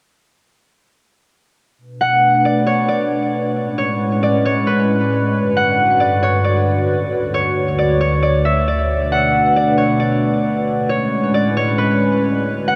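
A hollow, airy pad opens at 1.8 s with sustained chords from its low register up through the middle, its flute-like tone softened by chorus and slow, lingering swells of attack and release. A moment later, at 2.0 s, a fingerpicked concert harp enters with a ringing melody in a high, narrow range, filtered to a warm glow and trailed by delay. This dreamy, blissful hip hop piece moves at 135 BPM in 4/4 with a relaxed half-time feel, set in A major. The harmony drifts through Bm7, Amaj9, Gmaj7 and Dmaj7 before circling back to Bm7 and Amaj9. Both parts sit up front in a mix soaked in a huge ambient reverb, giving this passage cut from a longer piece a floating, weightless atmosphere.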